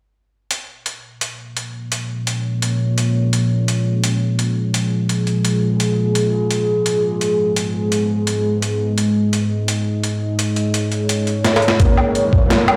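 Half-time drum and bass with a spacious, cinematic mood, this excerpt is cut from a longer piece and moves with a lightly swung half-time feel over Bbm7 and Abm chords. A boom bap sampler-style drum kit of hi-hat, high-tuned snare and woodblock starts at 0.5 seconds, gritty and overdriven, pitched down and re-recorded in a large room. From 1.6 seconds a deep, moody ambient pad holds sustained chords, its detuned sawtooth unison and sub octave given chorus, built-in reverb and sidechain pumping, while a filter sweep runs across it. After a drum fill, a thumpy, tape-warm electronic kick lands up front at 11.8 seconds alongside a felt-muted upright piano playing soft, intimate arpeggios through a low-pass filter and delay, its action noise audible, and an electronic riser enters at 11.9 seconds. The whole mix sits in a moderate echo chamber reverb with the ring of a bare stone room, as if played on a big sound system.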